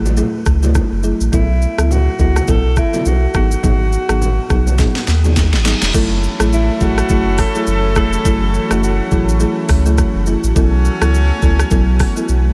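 Afrobeats at 104 BPM with a sultry, mellow sixteenth-note swing, this excerpt sets a woody, rustic marimba and a round sine sub bass under an up-front electronic drum kit with knocking kick, sharp snare and metallic hats, plus distant, soft-handed bongos and congas, while a breathy alto saxophone with light vibrato and delay carries the melody from 1.3 s, a drum fill and background reverse cymbal lead at 5.9 s into a clear, octave-doubled horn section with delay, and an ethereal detuned pad with chorus and built-in reverb settles in behind, all in a light small-room ambience over chords moving from F#m9 through B7sus4 and G#m7.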